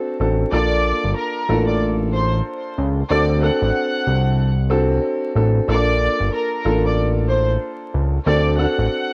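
Boom-bap hip-hop at 93 BPM in Bb major, this nostalgic, swung fragment opens on a woody, boxy upright piano with audible action noise, joined at 0.2 seconds by a fat, detuned sawtooth analog bass and at 0.5 seconds by a violin section carrying the melody with light vibrato and a reedy, gut-string tone. The harmony moves between D7 and Bbmaj7, with the piano, bass and strings all up front. The whole mix sits in light reverb under worn, warbling cassette tape and vinyl crackle, giving it a warm character.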